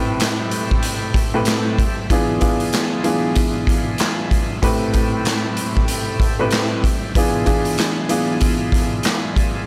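Boom-bap hip-hop in A minor at 95 BPM, this moody, reflective excerpt moves at a swung, unhurried pace over a cycle of Am7 and E7b9. An upright piano carries the accompaniment from the start, its woody, intimate tone touched with audible action noise and a vintage cassette-tape colour, sitting up front in the mix. Behind it, a percussive tonewheel organ holds thick sustained chords, lightly overdriven and turning through a slow rotary speaker, with third harmonic percussion shaping its attack. An acoustic garage drum kit enters at 0.2 seconds with a punchy kick, medium-tuned snare, hi-hat and handclaps, saturated and gritty in a bright stone room that pumps around the hits. Studio reverb adds space to this short cut from a longer piece, which runs to 9.7 seconds.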